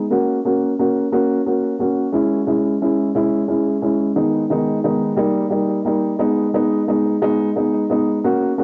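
A dark, woody upright piano sits boxy and up front, playing alone in a short, aching pop fragment in 6/8, its tape echo and the light small-room reverb of a cassette home recording deepening the melancholic mood as the passage shifts into a new section at 6.2 s before it is cut off at 8.6 s.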